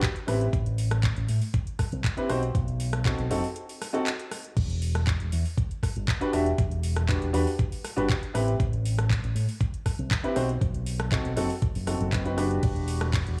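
Lightly reverberant and up front, this groovy, cosmic nu-disco excerpt in E minor at 119 BPM rides a gritty, thumpy electronic kick and a layered, tape-warm house kit of metallic hi-hats, handclaps, rim clicks, ride and crash, under an intimate concert grand piano whose audible action noise, sidechain pumping and slapback echo color the Am7, B7b9 and Em7 changes, while a fingered electric bass with an envelope filter anchors the low end, with a brief break from 3.6 to 4.6 seconds.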